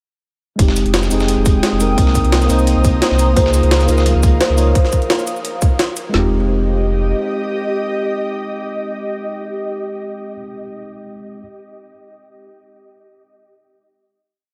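Dreamy, rolling liquid drum and bass in which a mellow tine electric piano's rootless held chords and an ethereal, detuned pad float in a huge reverb over a deep sine sub bass, a tight-kicked, woody-snared kit layered with gritty, overdriven jungle breaks and a dusty looped breakbeat, and a hollow, woody kalimba sequence drifting against the bar from 3.4 seconds before the drop gives way at 6.1 seconds to a final chord.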